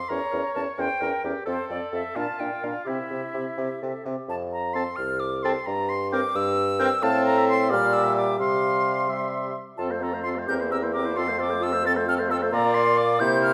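A lively, spirited classical-period movement for wind quintet in 6/8, cut from a longer piece and heard in a reverberant recital hall. An airy silver flute sits up front with vibrato and a soft attack, carrying the high melody above a mellow oboe's second line, while a clear clarinet in the background and a distant, roomy French horn fill out the accompaniment. A warm bassoon, also up front with light vibrato, anchors the bass as the music moves from its brief opening into a longer second section at 4.3 seconds.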